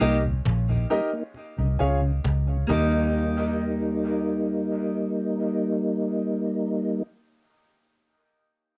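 Spacious and hazy, this short dub reggae cut moves at 67 BPM in a straight 4/4, centered on Eb mixolydian and shifting between Eb and Db over a home cassette recording with little reverb. A round, dark tonewheel organ with chorus vibrato and slow rotary speaker sits up front alongside a foam-muted, amped fingered electric bass, while a scooped, slightly broken-up picked electric guitar and woody upright piano stabs trail dub echo. A hard-handed cajon with faint snares sounds through the opening break and drops out at 2.9 s, leaving the band to carry the second section.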